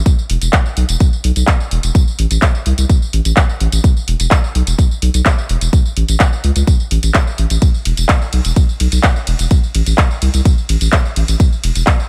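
Euphoric and hopeful, this short progressive house excerpt in a straight 4/4 sets a punchy, up-front electronic kick against a house kit of handclaps, bright hi-hat, ride cymbal and tambourine that pumps with sidechain and sits in small room ambience, while a deep, thick saturated sub bass spanning E1 to C#2 sustains under the same sidechain pumping in a dry mix with little reverb.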